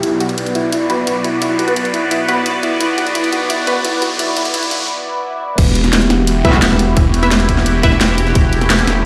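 Heard through a big sound system in a bare stone room with a lush hall ambience, this cut from a dark, aggressive technical drum and bass track at 173 BPM in E minor opens on a build-up, where a sweeping, resonant pad holds sustained chords, a soft, round pluck spins arpeggios, a muted, deep dub chord stab sits in the background, and an electronic riser and swell climb toward a brief break at 4.9 seconds. Underneath, a thick, swirling phased saw bass and an overdriven drum kit with a cracking snare and bright hats stay up front throughout. The drop lands at 5.6 seconds on an Emadd9 chord, bringing in a tight, overdriven electronic kick, and a metallic, distorted wobble bass snarls in for a moment at 6.4 seconds.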